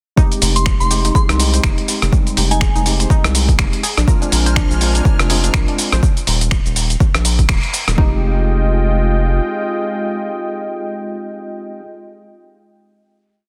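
Deep house at 123 BPM in F dorian, smooth and moody, built on a punchy four-on-the-floor electronic kick, a gritty, tape-warm sampler-style kit of snaps, hats, rim clicks and shaker with soft clipping on the snare, and a round, deep, sidechain-pumping analog bass in a dotted rhythm, all under a dense, heavily limited master. A mellow tine electric piano holds rootless chords with syncopated pushes across the whole piece, while a detuned, wave-folded analog pluck cycles a 12-step arpeggio loop that drifts against the bar and a pure FM bell offers short answering phrases early on. From 4.1 seconds a warbling, vintage pad and a shimmering string-machine violin high note fill in behind, and the pad and electric piano carry the final Fm9 chord from 8.0 seconds.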